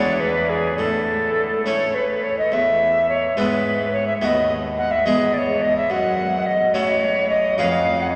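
A lilting 6/8 at 71 dotted-quarter beats per minute carries this radiant, dance-like baroque-style sonata movement in E major, tuned to A4 = 442 Hz and cut from a longer piece, where an airy, woody alto recorder with vibrato and soft attacks sings the melody up front, an Italian-style harpsichord with two sets of strings fills in plucked, mid-forward accompaniment, and a single bowed cello with a reedy gut-string tone anchors the continuo bass, the whole ensemble bathed in a lavish cathedral reverb lasting 7.1 seconds.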